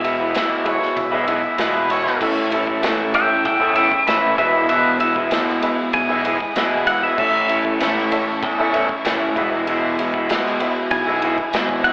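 A twangy pedal steel guitar with slapback echo carries the melody of this warm, open-road folk and heartland rock excerpt from the start, over a slightly broken-up, lo-fi electric guitar riff, a punchy, bright fingered bass, a polished country drum kit, and very quiet parts from a dark, full-bodied jumbo acoustic guitar, a woody upright piano, a bowed sul tasto string section holding sustained chords, and a jingly tambourine. A mellow, distant harmonica adds a second line from 0.7 to 2.2 seconds, after which the pedal steel takes a solo, played with fingerpicks and slide and marked by volume swells. The mix sounds like a live club gig heard through the venue's PA, with club reverb and a telephone-like tone.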